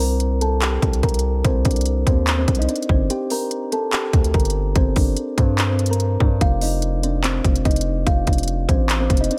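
Melancholic and menacing, this dry half-time trap hip hop fragment at 145 BPM in C dorian pairs a woody, hollow kalimba melody, treated with delay and a filter sweep until 3.1 seconds, with a saturated, heavy distorted 808-style bass and an up-front electronic drum kit of hard-clipped kicks, crisp hi-hats and handclaps, pausing for a brief break at 3.1 seconds as the chords move from Cm to Gm and then F.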